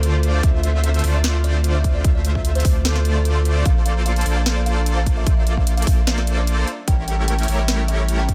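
Bittersweet and emotional, this short future bass excerpt moves at a half-time feel in 4/4, its harmony shifting from Dm9 to Bbmaj9 at 3.7 seconds and on to A7b9 at 6.7 seconds. Huge, detuned supersaw chords carry the riff with a bright, lush chorus and a layer of vintage 12-bit sampler grit, while an airy, breathy pad sits in the background holding sustained chords with a slow attack and long release. Over them a buzzing kalimba plays the melody with a woody, hollow-box pluck, its ringing notes trailed by dub echo. A deep, thick, saturated sub bass sits up front, and a trap kit of sharp snare and bright hats with a tape-warm character plays from the start, joined at 0.4 seconds by a punchy, layered electronic kick. Sidechain pumping runs through the kalimba, pad, supersaws and sub bass, and the mix stays dry and close, with little reverb.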